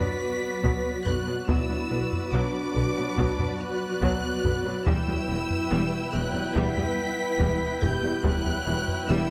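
A straight 4/4 pulse comes from solo taiko drums, struck with heavy sticks and sounding close and dry, driving this brooding, relentless passage cut from a longer hybrid orchestral and electronic film score. High bowed violins carry a lush, focused melody with vibrato, while a second, more distant violin line adds intensity beneath it. A dark French horn section holds roomy sustained chords, and in the background, warm violas supply soft-attack accompaniment and rich, smooth cellos anchor the bass, joined at 0.6 s by an intense double bass section. Electronic colour comes from a very quiet, round pluck playing gentle arpeggios with chorus, and a cloudy granular pad whose blurred, evolving chords drift with their own built-in reverb. The harmony moves from Bm to Em at 4.9 seconds, and a moderate scoring stage reverb gives the ensemble a cinematic sense of space.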